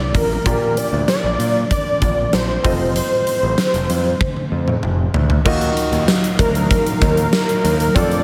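A thick, detuned unison lead carries the melody from the first moment, its sawtooth tone mellowed by a sub octave and vibrato. It arrives alongside a clear concert grand piano playing polished, short-sustained accompaniment and a growly, overdriven picked electric bass. In this glossy, romantic slice of 1980s-style pop, a huge arena drum kit sits up front with a fat snare, punchy kick, bright cymbals, tambourine and toms, all in a pumping hall sound. A drum fill from 4.2 to 5.5 seconds leads into a new section, where a vintage string machine with cellos fades in behind everything, sustaining full, evolving chords softened by ensemble chorus. A moderate plate reverb lends the whole track a sheen, and the chords move from Gm7/Bb to F7 before settling on Ebmadd9 as this fragment of a longer piece ends.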